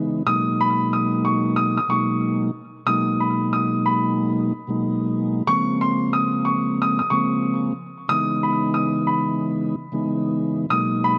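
A dark upright piano carries the melody up front, its woody, natural tone sitting between B4 and D#6 through the full 11.2 seconds of this brief cut from a longer hip hop piece. Beneath it, a mellow tonewheel organ supplies accompaniment in the lower register, its soft, flute-like voice carrying vibrato along with a slow rotary speaker and a touch of cassette tape character, and it also sits close and present. The groove moves at 92 BPM in 4/4 with a 60% swing on the sixteenths, in G# minor with tuning set slightly sharp at A4 = 441 Hz. The harmony moves from G#m9 to A#m9 at 5.5 seconds and then to C#m9 at 8.1 seconds, lending a tough, moody cast. A moderate echo chamber reverb with a small room ambience surrounds the pair, and the overall production is dark and warm.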